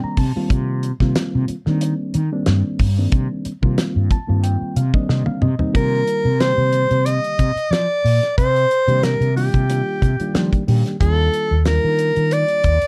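A lightly swung sixteenth-note groove in 4/4 drives this slick, driving piece of electric jazz fusion, cut from a longer work. A damped 70s drum kit sits up front, dry and acoustic, with a fat snare and tight kick alongside hi-hat and toms, while a round, amped fretless electric bass anchors the low end. A reedy, clean electric piano heard through its built-in speakers supplies the chords, opening on Cm9 and adding fills at the start and again in the run-up to the second section, joined by a short drum fill that leads into it at 5.8 seconds. There a close-miked soprano saxophone takes a jazz-style solo, its subtone, vibrato and scooped notes giving the line a warm voice as the harmony moves from Cm11 to Ebmaj9 at 11.0 seconds. Light reverb and a dark, warm production frame the whole band.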